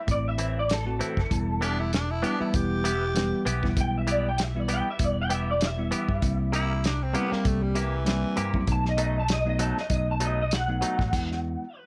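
Straight-eighth soul blues at 98 BPM in E harmonic minor, this short, smoky and brooding cut from a longer piece moves through Am, Em, C7 and B7 before landing on E during a stop at 11.1 seconds. An electric guitar through a small old amp carries the melody with a slightly broken-up, compressed, lo-fi picked tone, thickened by ensemble chorus. Beneath it, a bell-like tine electric piano supplies clean accompaniment while a round, punchy fingered bass sits up front alongside a dry, muffled soul drum kit with dark cymbals, a medium-tuned snare and a tight kick. A direct-recorded clean guitar adds twangy picked stabs, set back a little and washed in spring reverb and digital delay. From 1.6 to 8.5 seconds a growling tenor saxophone plays a raspy, breathy second line with light vibrato, and the overall room sound stays close and dry.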